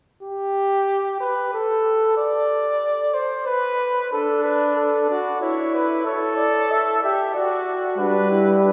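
In a straight 3/4 at 93 BPM, this joyful, stately classical canzona for brass ensemble unfolds in an imitative style, cut from a longer piece. A warm cornet carries the melody from 0.2 seconds, sitting up front with a light vibrato in the range G4 to E5. At 4.1 seconds a mellow trumpet joins with a second line between D4 and A4, its smooth top and vibrato lending a rounded classical polish. The trombone arrives at 8.0 seconds for a brief accompaniment on G3, with a light vibrato and a vintage color. Harmony moves from D through A and D/F# to a closing G, and the whole ensemble is heard from further back in a lofty cathedral space, the long reverberant tail of about 4.3 seconds adding ceremonial grandeur.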